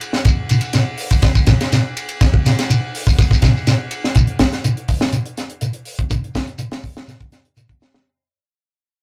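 Intense and hypnotic, this short afrobeat excerpt, cut from a longer piece, moves at 123 BPM in a straight 4/4. A tight funk drum kit sits up front, dry and acoustic, with bright cymbals, a high-tuned snare, a tight kick, and hi-hat and ride cymbal work. A shekere runs alongside from the start, its grainy, mellow acoustic tone carrying a small-room quality. The whole take has the rough feel of a rehearsal-room recording, with a brief, wet booth ambience and a touch of tube saturation. After an opening section, the music shifts into a second passage at 4.2 seconds and begins to fade, with a drum fill arriving at 7.8 seconds just before the close.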